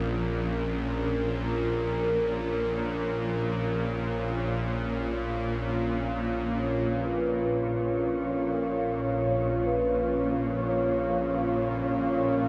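A bowed-like drone sits up front, string-like, nasal and tense with a bright vibrato, holding low in this ominous, vast dark ambient piece in free time, cut from a longer work and centred on B-flat minor. Above it a deep, moody pad sustains detuned chords with chorus, while a round, warbling horn-like synth lead with a vintage tinge and delay murmurs a melody in the background. At 7.4 seconds an airy, breathy wind-like texture joins, and the whole is bathed in a huge, wet reverb.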